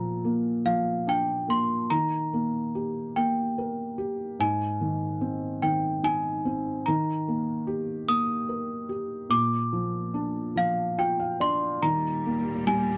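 A worn celesta and a felt-muted upright piano open together at 0.0 seconds, setting a sleepy, tender lullaby mood for children in Eb major. The tempo is a slow, rubato 48 beats per minute in dotted quarters, in 6/8. Up front, the celesta carries the melody high in its range with a bell-like, sweet, slightly out-of-tune sound. Beside it, the piano plays a mellow, intimate accompaniment through a harmony that moves between Bb, Eb and Ab, and it adds a soft fill at 10.6 seconds. At 11.8 seconds a studio string section enters lower in the mix with clear, bowed chords and vibrato, settling on Eb. Light reverb and close, detailed microphones keep this short passage from a longer piece gentle and near.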